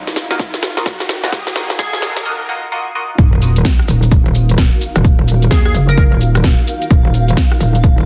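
A swaggering, gritty bass house excerpt opens on an Eb minor add9 chord with a riser and a drum fill building over a metallic, distorted wobble bass, a blurred granular cloud pad and a nasal band-passed chord stab with phaser and tape echo, joined briefly by a glassy, crystalline pluck phrase, before the drop at 3.2 seconds hits with an impact as the punchy, up-front kick drives the swung house kit of cracking snare and metallic hats beneath a second brief pluck phrase.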